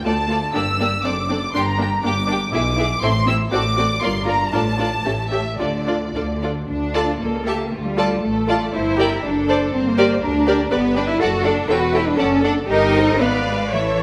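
The cello section carries the most weight in this quick classical-period movement for string orchestra, its lush, vibrato-rich bowing filling the lower middle from 0.1 s to the close alongside the double basses. A distant violin section sings the melody with a focused tone, while a second violin line, smooth and even, moves just beneath it. Violas supply the accompaniment, and the double basses anchor the harmony. At 120 BPM in 2/4 with a rubato feel, the mood is cheerful and lively, opening in D minor before brightening into D major at 10.7 s. The ensemble sits in a moderate scoring-stage reverb, and this passage is cut from a longer piece.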